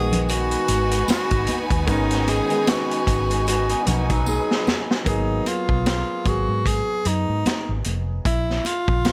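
Lush 1970s-style soul at a slow 75 BPM with a swung sixteenth-note feel, cinematic and silky in G# minor shifting to G# dorian at 5.1 s. A breathy, close-miked tenor saxophone carries the melody throughout over a natural grand piano, a round, foam-muted electric bass, a vintage drum kit with a punchy kick and a high-tuned snare, soft-handed congas, a jingly tambourine, bowed strings split between a distant, very quiet chordal bed and an intense bright second line, and a slightly broken-up electric guitar riff from 3.7 s, with a drum fill at 4.3 s leading into the second section.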